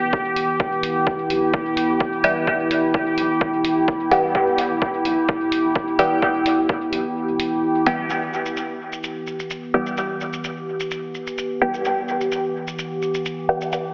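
A lightly swung pulse of punchy analog kick and hi-hat with shaker, re-recorded in a large room, carries this hazy, meditative dub techno cut, where a warbling, nostalgic lo-fi pad holds sustained chords up front beside a muted, detuned chord stab with phaser, cassette grit and dub echo, while a round sub bass sits in the background and a resonant, bubbling filter texture drifts until both fall away at 8.1 s as a filter sweep runs on the stab, the pad, bass, texture and stab all pumping from sidechain under lush hall reverb and a squeezed radio-and-telephone sound.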